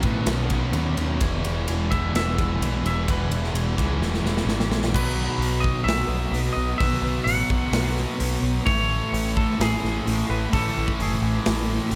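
Bathed in light reverb, this short cut from a longer shoegaze and dream pop rock piece feels dreamy and blissful, driven by a big-room acoustic drum kit placed up front with a punchy kick, bright cymbals and a fill at 4.0 seconds, under a dark, round picked bass. A bright, double-tracked overdriven guitar riff sits beside a fuzz guitar thickened by ensemble chorus, and a raw garage guitar with overdrive and reverse reverb that drops out at 4.9 seconds; the fuzz and garage guitars are tucked in the background. Above them, a clean, fingered, twangy lead guitar carries the melody through spring reverb and tape echo, as the harmony moves from Badd9 and E to Bsus4 and Amaj7.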